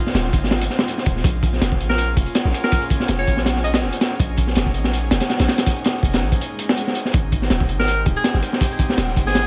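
Drum and bass with a jungle edge, dark and frenetic, as a crunchy, saturated breakbeat kit with a tight kick and high-tuned snare drives up front over a deep, boomy 808-style bass and a soft, breathy pad with chorus in the background, while a clear, forceful alto saxophone with dub echo plays jazz-style solo phrases from 1.9 s and again from 7.8 s, just after a brief break and electronic swell.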